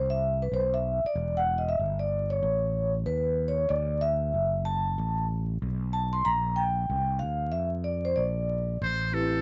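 Ringing soft-mallet vibraphone with a slow motor vibrato takes a solo over a growly, amped fretless electric bass in this mellow, smoky, swung hip hop fragment, moving through Em, Aadd9, D6 and Bb before a buzzy, metal-muted trumpet with scooped notes and analog delay enters at 8.8 seconds on an Am7, the mix carrying light reverb, vinyl crackle and a dry, gritty hardware sound.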